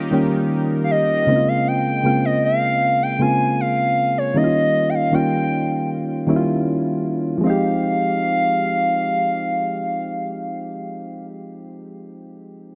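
Contemporary R&B at a slow 78 BPM in F minor, longing and sensual, where round, warbling electric-piano-like synth keys carry the chords from Eb7 through Bbm9 to Fm9, a lush, detuned unison pad glows only in the opening 1.2 seconds, and a hollow, woody clarinet-like synth lead with vibrato and tape echo sings the up-front melody from 0.8 to 11.3 seconds, all set in light reverb in this fragment of a longer piece.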